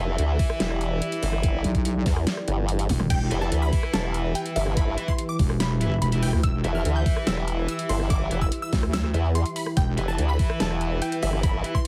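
Heavy wobble dubstep at 144 BPM in a half-time feel, this chaotic, aggressive excerpt stays on E minor throughout. Two up-front wobble basses dominate the low end: a detuned sawtooth voice pushed through a formant filter runs from the start, and a saturated square-wave wobble with a mellow edge joins at 1.6 seconds and drops out at 10.0 seconds, both thickened with chorus and overdrive. An overdriven, knocking electronic kick hits hard beneath a layered kit with a huge snare, metallic hats, rim clicks, toms and crash, and a drum fill arrives at 2.9 seconds. Behind them, a lush supersaw pad holds sustained chords that pump against the sidechain under a low-pass filter, while a bright, double-tracked distorted guitar cuts through with tight stabs through digital delay. From 3.1 seconds a punchy, wave-folded unison pluck carries the melody high up, its moving notch and filter sweep echoed by digital delay. 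The mix is dry and heavily compressed, giving it a dense, radio-ready punch.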